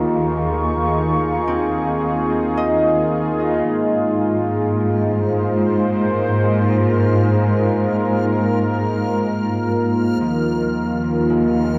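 A detuned sawtooth pad sits up front with chorus and tremolo, holding soft-edged chords over a lush, bowed cello section with expressive vibrato in this spacious, melancholic ambient excerpt in a slow triple metre. A mellow, ringing harp plays arpeggios through tape echo in the background and fades in from 3.7 s, while a resonant drone with moving overtones hums in the background. At 4.9 s a faint, reversed granular texture begins to swell in, and the whole piece floats in a vast, echoing cathedral reverb, its harmony moving from Eb9sus4 to Ab6 and on to Ebsus4.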